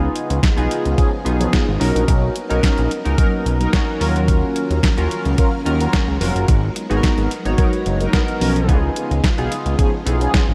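Early-eighties boogie funk with a slick, late-night mood, moving at 109 BPM in a straight 4/4 and centred on G# dorian, cut from a longer piece. A detuned 8-bit digital drum machine, tape-warm and up front, comes in at 0.2 seconds with a thumpy kick, medium-tuned snare and hi-hat, while a fat, thick analog bass built on detuned sawtooth with a filter sweep sits equally forward underneath. A glossy, retro chorused polysynth carries the accompaniment with pulse-width-modulated tones and slapback echo, and a very quiet string machine adds shimmering, vintage violin chords with ensemble chorus and a moving notch. From 1.0 seconds a mellow, round synth brass line sits in the background, dark and brassy, treated with chorus, phaser, analog delay and slapback echo. The harmony moves through C#7, Bmaj7, D#m9 and G#m9 before returning to C#7, all bathed in a lush hall reverb that gives a big arena sound.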